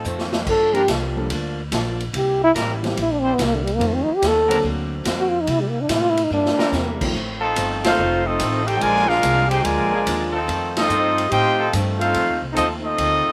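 A dry, close-sounding big band swing excerpt at 144 BPM, joyful and energetic, opens with a breathy, up-front solo trombone over bright sustained trombone-section chords, dark mellow grand piano, woody pizzicato upright bass, a boxy picked archtop guitar with slapback echo in the background and a distant, roomy drum kit with a punchy kick and drum fills. The second half begins at 7.1 s in F major, and a band accent at 7.8 s brings in a clear trumpet section with slapback echo that carries the melody over a brilliant, tight trombone section.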